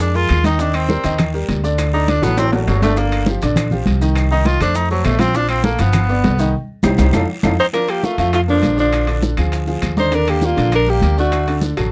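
Sophisticated and sunny, this brisk Afro-Cuban jazz cut opens with a bright, soft-edged tenor saxophone solo over warm upright piano, a woody, thumpy pizzicato upright bass up front, and a background bed of damped congas, round low-tuned bongos, ringing metal-shelled timbales, woody claves, raspy guiro and grainy maracas, with drum fills and a band accent before a breathy, clear alto saxophone takes the melody at 7.6 seconds in a dry, close 1970s-style studio sound.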